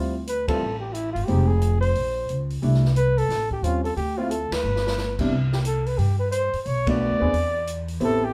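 A roomy studio sound with moderate reverb, heard from further back, frames this short, relaxed and sophisticated slice of small-group swing and bop. A mellow flugelhorn with light vibrato carries the melody up front, while a woody, growly upright bass played pizzicato and a baby grand piano with long sustain provide the foundation, supported by a natural-sounding drum kit with dark cymbals and a boomy kick. The band hits accents together at 0.4, 4.5 and 6.8 seconds, with a brief drum fill from 4.6 to 5.0 seconds, shortly before the second section arrives at 5.3 seconds.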